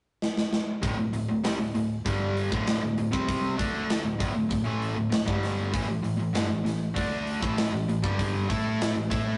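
A tight metal drum kit opens with a short fill before two bright, overdriven electric guitars and a picked, amped bass crash in at 0.8 seconds, driving a straight hard rock riff over a D5 chord that shifts to A5 at 5.7 seconds. The drums sit up front with a tight kick and medium-tuned snare, one guitar sits forward while its twin hangs in the background, and the bass adds a warm low end. Energetic and anthemic, this cut from a longer piece has a rough rehearsal-room sound with stone-room reverb and saturated, dark highs.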